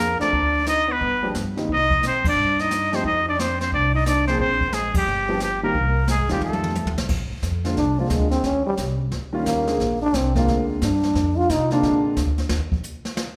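Relaxed and sophisticated, this short cut of small-group swing and bop jazz in Bb mixolydian swings at 177 BPM as a nasal, breathy straight-muted trumpet carries the melody until 6.9 seconds over a gritty, growling trombone second line, woody pizzicato upright bass, natural grand piano comping and a brushed drum kit with dark cymbals, with band accents at 2.2 and 4.9 seconds and a drum fill setting up a raspy trombone solo from 7.1 seconds, all bathed in a recital-hall reverb.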